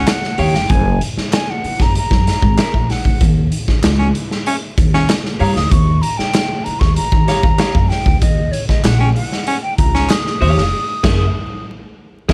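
Strutting and funky, this short cut from a longer piece rides a straight 96 BPM groove in 4/4, moving over Eb9 and Gbadd9 chords before landing on Gb9 for a band accent at 10.7 seconds. A breathy, hollow jazz flute carries the melody with a soft attack and straight tone, sitting distant in the mix as it solos across a range of Db5 to Eb6. Beneath it, a woody pizzicato upright bass on steel strings anchors the low end, while a dark, clean, fingered electric guitar fills in the accompaniment in a higher register. The raw garage drum kit is the most forward element, with a punchy kick, medium-tuned snare, hi-hat and crash in a bright, pumping stone room, its saturated, gritty tone rolled off at the top and capped by a drum fill at 12.0 seconds. A smooth-topped baritone saxophone with vibrato enters in brief bursts on a single Db4, up front, and a crisp, close group handclap adds very quiet percussion. 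Light reverb and a prominent layer of vinyl crackle give the whole recording a worn, vintage surface.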